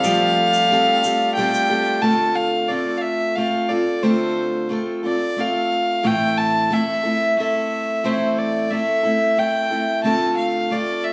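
The recording sits in a reverberant studio, heard from further back in the room, with the fiddle and the parlour guitar placed up front. This is a peaceful, nostalgic slice of acoustic folk from a duo or small band, moving at 90 BPM in a straight 3/4. A single bowed fiddle carries the melody with a reedy, gut-string tone, while a bright picked steel-string guitar plays the accompaniment throughout. At the opening, a very quiet, clean pedal steel adds a compressed second line with slide and volume swells, a hand-pumped harmonium breathes mellow sustained chords, and a grainy tube shaker keeps time; the shaker and pedal steel stop at 1.7 seconds and the harmonium at 2.0 seconds. From there the fiddle and guitar carry on as a pair, the harmony moving from Fadd9 through Dm7 and Am before returning to Dm7.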